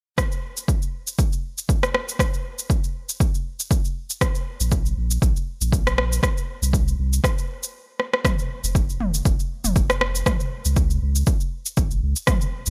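An overdriven electronic kick and a layered deep house kit of rim click, shaker and toms open this driving, spiritual afro house track at 119 BPM, with a lightly swung 16th-note feel and a punchy, up-front sound in a small, close room. At 4.6 seconds a round, mellow sine sub bass arrives, pumping with sidechain compression, and a drum fill at 8.0 seconds carries the groove into a second section. The recording is dry overall and is cut from a longer piece.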